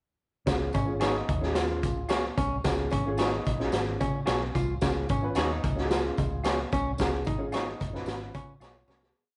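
Danceable and warm, this short uptempo 1960s-style soul piece in C# moves at 111 BPM, led by a raw garage drum kit up front whose high-tuned snare and boomy kick sound gritty and saturated as it drives a beat with the snare on every beat. A foam-muted, round electric bass plays a syncopated line with slides and chromatic approach notes, a dark, woody upright piano pushes close-voiced chords with grace notes and short fills in the background, and a distant, jingly tambourine marks each beat. An archtop guitar repeats a compressed, picked figure from 0.7 seconds while a clean semi-hollow guitar adds short chops on the backbeat, set in a small room with light reverb before the music fades from 7.0 seconds and a drum fill closes it at 8.6 seconds.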